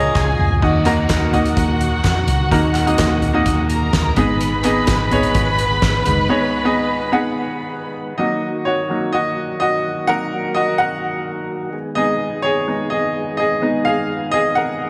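The groove is straight and steady in 4/4, opening with a short drum fill at 0.2 seconds on a soft-mallet acoustic kit with a punchy kick, fat snare, toms, hi-hat and crash in a big room, joined by very quiet, hollow group handclaps that sound distant. This earnest, bittersweet piano-driven pop passage is cut from a longer piece, with a clear, woody, slightly detuned upright piano up front, its short sustain carrying the accompaniment over minor-key chords. Beneath it, a dark, foam-muted vintage fingered electric bass gives a round, amped low end, while a tonewheel organ holds clean sustained chords in the background through a fast rotary speaker. A distant studio violin section adds a lush bowed second line with vibrato, portamento and a soft attack. The drums, claps and bass fall away for a break at 6.3 seconds, and from 8.2 seconds the upright piano takes a solo over the organ, all set in a moderate echo chamber reverb.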